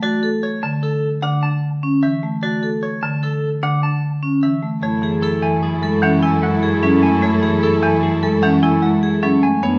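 Woody, percussive marimba and ringing, metallic vibraphone arpeggios sit up front in this bright, hypnotic passage of minimalist classical pattern music at 150 BPM in 6/4, with a twangy, compressed clean electric guitar carrying the melody above them. At 4.8 s the music settles into F# minor on an F#m7 chord as a lush bowed string section adds sustained chords, a rich solo cello holds the bass, and a mellow, distant clarinet traces a quiet second line in the background. A large studio reverb gives the whole ensemble a spacious wash across its roughly 10 seconds, cut from a longer piece.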